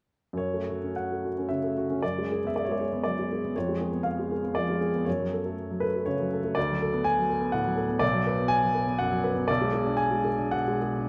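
A solo upright piano opens at 0.3 s, setting a romantic classical character piece in triple metre with a freely flexing rubato feel. Its tone is woody, intimate and polished, sitting up front with long sustain, while the clatter of its action is audible beneath the notes. The harmony moves from F#m through G#m7b5/F# and C#7/E# back to F#m, then turns to D6 at 6.6 s and on to Bm, giving the passage a bittersweet, brooding cast. The piano ranges from B1 up to G#5, and a moderate recital-hall reverb within a dark production lends the sound a sense of space. Cut from a longer work, this short passage breaks off at 11.1 s.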